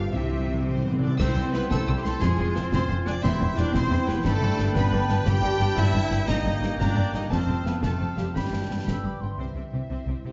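A heroic adventure film score excerpt in C major, moving at 117 BPM in 6/8 with an adventurous, triumphant air. Lush bowed strings carry it, with a focused violin section on the melody above rich violins, violas, cellos and a deep double bass section, while a clear clarinet, airy flutes, a distant solo oboe from 1.2 seconds, very quiet dark French horns and a ringing thumb-plucked harp fill out the texture. Hard-mallet timpani open with a fill before snare drum, dark clash cymbals and bass drum join at 1.2 seconds, all set in a moderate scoring-stage reverb with a dark, warm production.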